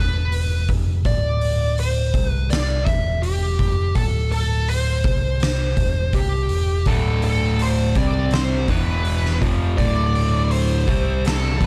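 An oversized low-tuned drum kit sits up front with a boomy kick, fat snare, hi-hat and a gritty, pumping stone-room sound, driving this hypnotic, brooding stoner and doom metal excerpt at 82 BPM in D dorian, where a round, punchy overdriven picked bass anchors the low end, a dark fuzz lead guitar sings the melody through wah, distortion and digital delay, and a bright, double-tracked, compressed fuzz guitar riff joins at 6.9 seconds, all set in a small room with a dark, warm production.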